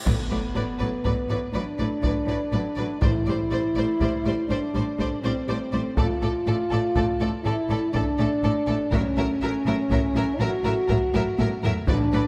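A huge, dark cymbal swell and impact opens this dramatic, relentless passage of epic orchestral film score, cut from a longer piece and moving at 81 BPM in a straight 12/8. Beneath it, the full ensemble enters almost at once. A close, expressive violin section carries the melody with vibrato while a second violin line sits just below. A mellow French horn section holds sustained chords up front, and violas, distant cellos and double basses fill out the lush accompaniment and bass in the background. A taiko ensemble struck with hard sticks drives the pulse throughout, timpani strike at 3.0 seconds, and a drum fill at 11.1 seconds leads to a final timpani hit. The harmony moves from Bm/A through Gsus4/A and Dm/A to F#7/A over a sustained A in the bass, and a moderate scoring stage reverb gives the orchestra its sense of space.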